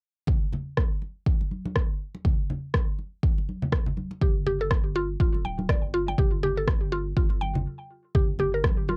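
Hypnotic and earthy, this short afro house cut opens at 0.3 seconds with an overdriven, deep electronic kick drum placed up front and bright close congas with a thin skin, joined at 0.8 seconds by a layered electronic rim click, all in a swung groove. At 4.2 seconds a woody, percussive mallet-like synth pluck arpeggiates over a Dm chord with chorus, analog delay and sidechain pumping, while a round, dark analog bass pumps underneath. A brief stop arrives at 7.7 seconds, and the home cassette recording keeps the sound dry and close, with tape coloring the kick, rim click and pluck.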